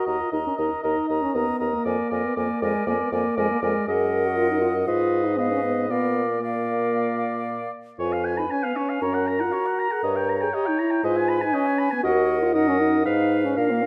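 Heard in a moderate recital-hall reverb, this stormy, dramatic passage from a quick classical-period wind quintet movement in Eb minor at 118 BPM sets an airy, vibrato-touched concert flute on the melody above a clear, distant oboe second line, while a warm, prominent French horn and a present clarinet fill the accompaniment and a mellow, up-front bassoon carries the bass from 0.1 seconds.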